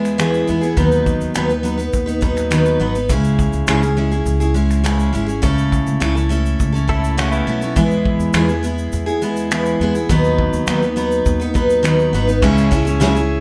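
Reflective and tender, this acoustic pop excerpt moves at 103 BPM in a straight 4/4 feel, set in C# minor and cut from a longer piece. A bright, full-bodied jumbo steel-string acoustic guitar sits up front, picked through a progression that circles from E through B/D# and C#m to A/C#, with finger squeak audible on the strings. Beneath it, a pizzicato upright bass adds a woody, warm low end, while a loose indie drum kit heard from a distance in a small, roomy space supplies kick, fat snare, shaker, finger snaps and dark crash cymbal. Around 6.9 seconds a direct-recorded clean electric guitar slips in briefly with a twangy, compressed second line carrying spring reverb. At 12.4 seconds a tonewheel organ with a stopped rotary speaker adds clear sustained chords in the background as the harmony returns to C#m, all under a light reverb.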